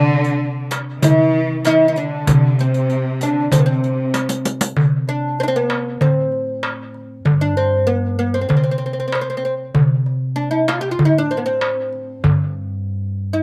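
A crisp, metal-shelled darbuka sits up front beside a woody, plectrum-plucked fretless oud carrying the melody with a slapback echo, while a dark pizzicato upright bass holds the low line, a distant bowed cello section with vibrato adds a second line until 4.4 seconds, and a close, dry riq with dark jingles plays until 4.8 seconds, as a drum fill from 4.1 seconds leads into the second section of this festive, dry Arabic maqam excerpt.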